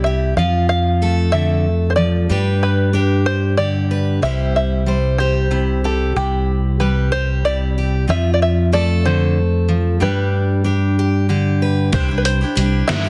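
In a straight 6/8 at 62 BPM, this uplifting, nostalgic indie folk excerpt in C major sets a twangy, plunky open-back banjo melody over a full-bodied fingerpicked jumbo acoustic guitar with audible finger squeak and a growly, amped fingered electric bass moving through F, G and C, until at 11.9 seconds a bright picked auditorium guitar and a gritty, pitched-down trip hop sampler kit with a thumpy kick join on a Cadd9 chord, all set in light small-room reverb under a dense, heavily limited modern master.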